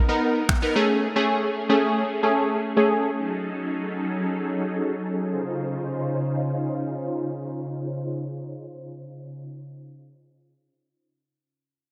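Upbeat and summery, this dance-pop fragment, cut from a longer piece, moves at 112 BPM in a straight 4/4 in Db major, with a lush hall reverb giving it a big arena sound. A vintage, full-bodied string machine playing violas holds sustained chords up front for the whole 9.5 seconds, its soft attack and long release colored by phaser, ensemble chorus, sidechain pumping and a low-pass filter. A punchy, funky polysynth comp built from detuned sawtooth and square waves sits beside it from 0.1 to 3.1 seconds, with a fast attack, a moving notch, chorus and its own pumping and filtering. A filter sweep runs through the opening 5.3 seconds, while a barely audible electronic downlifter drifts in early and a brief hit from the pop drum kit lands at 0.5 seconds with finger snaps and a knocking, overdriven kick that sounds re-recorded in a small room. The harmony shifts from Cbmaj7 through Amaj7 and Gbm6 before settling on Dbmaj7 as the second section begins at 5.3 seconds.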